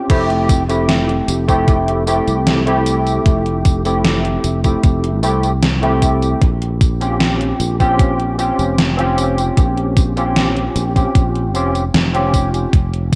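Nostalgic and woozy, this short vaporwave excerpt in F major drifts at 76 BPM in a straight 4/4, with a barky, up-front tine electric piano, lightly overdriven and coloured by ensemble chorus, 12-bit sampler grit and tape echo, moving from Fmaj9 to Bbm6 at 6.4 seconds over a growly, punchy fretless electric bass, a thumpy overdriven electronic kick drum, and a gated 80s digital drum machine playing crash cymbal, hi-hat, gated-reverb snare and tambourine, all set in light reverb with a cassette-tape haze.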